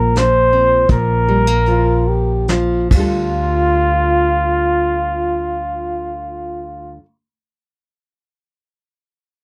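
Melancholic and heartbroken, this short cut from an acoustic folk-pop ballad in D minor moves in a slowing 3/4 at 67-84 BPM, with a breathy flugelhorn carrying the melody through scooped notes, light vibrato and slapback echo over fingerpicked nylon-string guitar and woody pizzicato upright bass, while a vintage brush drum kit with a fat snare plays only from 0.2 to 3.1 s and a soft-attack French horn adds a background second line from 1.7 s, all within a dry, close 1970s-style studio sound with light reverb, as the chords move from Bbsus2 to Dm.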